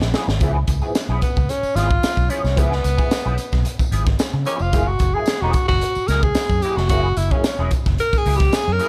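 A warm, subtoned tenor saxophone takes a jazz-style solo up front from 1.2 seconds, strutting through this energetic funk passage over Db7#9 and Gb9 chords after a brief drum fill opens the first 0.4 seconds. Underneath, a crisp fusion kit with a high-tuned snare and punchy kick pumps in a small room. A dark, round, foam-muted fingered bass is amped beside it, and a clean hollow-body guitar adds accompaniment through wah and ensemble chorus. A jingly tambourine sits distant in the background, and the whole cut carries light reverb.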